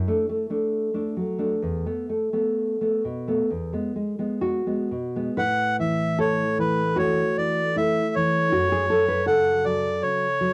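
The rhythm is loose and rubato in 4/4, drifting between 58 and 81 BPM, so the pulse breathes rather than marches. This serene, tender romantic duo in A major, cut from a longer piece, opens with the nylon-string guitar alone, its dark, full-bodied, thumb-plucked tone sitting up front in a deep classical register from E2 to B4. The guitar moves through D, a rootless Esus4 and a rootless E before the bandoneon enters at 5.4 seconds with the melody, reedy, close-miked and dry, pitched between B4 and F#5. The harmony then settles on A5 and turns to F#m at 8.5 seconds, with both instruments playing through to 10.5 seconds. Both parts carry a cassette-tape coloring, and the home recording sits in a moderate booth ambience with a short decay, giving the pair an intimate, unadorned closeness.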